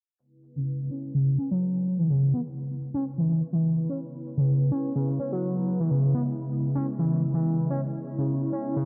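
A faint electronic shaker opens this energetic, funky breakbeat fragment at 0.2 seconds, tape-warm and re-recorded in a small room so it sits barely audible beneath everything. At 0.6 seconds an overdriven synth lead arrives up front with a gritty, guitar-like, screaming riff, its sawtooth and square-wave tone full-bodied and distorted, with a fast attack, sustained notes, vibrato and a filter sweep that keeps it evolving. Just after, at 0.7 seconds, a phased analog pad enters low in the mix with sustained chords on D-flat minor seventh, its detuned sawtooth layers and noise airy and swirling under phaser and chorus, with a slow attack and long release. The groove moves at 126 BPM in 4/4 with a light 54% swing on the sixteenths, and the tuning sits slightly flat at A4 = 435 Hz. The dry hardware recording carries light reverb and a low-pass filter, giving it a gritty character as it plays on as one continuous section to 8.9 seconds.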